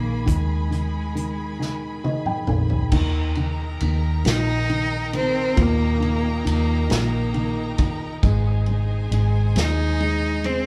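A bright, biting bowed cello carries the melody up front with light vibrato in this heartfelt, romantic six-eight pop ballad, set over a dark, woody upright piano with audible action noise and a smooth studio string section holding sustained chords. A round, punchy foam-muted electric bass sits close, while a roomy acoustic kit with dark cymbals and a tight kick joins at 0.3 seconds, the band sounding live together in a small room. Drums and piano each play a fill from 1.6 to 2.9 seconds as the harmony moves from a minor opening into the major-key second section.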